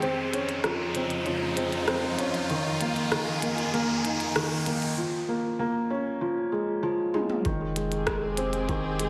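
A mellow, felt-muted upright piano sits up front playing a delayed riff over lush, distant bowed strings with vibrato and portamento. A clicky, minimal electronic drum kit of hi-hat, rim click and toms keeps the 97 BPM pulse in this hypnotic, cinematic F minor piano-and-strings electronica excerpt. An electronic riser builds until 5.0 seconds, and after a drum fill the drop at 7.5 seconds brings in a round sine sub bass with sidechain pumping and a muffled, thumpy, pitched-down kick, all bathed in a wet echo-chamber reverb.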